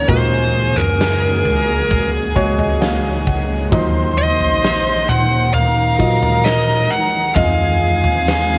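Melancholic and longing, this slow 66 BPM pop ballad excerpt sets an up-front fuzz lead guitar melody over a reedy, gut-string violin section, a baby grand piano with a fill from 1.9 to 3.7 seconds, an ethereal warbling pad with ensemble chorus in the background, a mellow tine electric piano carrying the bass, a huge arena drum kit with a fat snare and punchy kick, and a jingly, very quiet tambourine entering at 1.0 seconds, all moving from Gbadd9 to Ebmadd9 to Fm7 in light small-room ambience.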